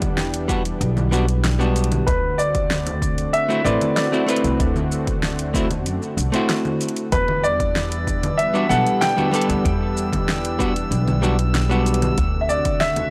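A straight 4/4 groove at 95 BPM rolls through this smooth, wistful sunset chillout excerpt in E minor, driven by a punchy, overdriven electronic kick and a layered deep house kit of congas, metallic hi-hat, shaker and fat snare, both set in a small room ambience. A woody, thumpy upright bass played pizzicato anchors the low end with tube saturation, while a clean, dark hollow-body jazz guitar sits up front with fingered accompaniment and tape echo. Beneath them, a lush unison pad of detuned sawtooth voices holds warbling, vintage chords through chorus, moving between Em7 and D7. At 2.1 seconds a mellow, intimate grand piano enters with the melody in a high register, its action noise audible and its notes sustaining long under tape echo. From 7.9 seconds a calm glass-harmonics texture drifts in the background on a single high E, its sine overtones softened by chorus and reverb, and the whole mix carries a dry, gritty hardware character with transformer saturation.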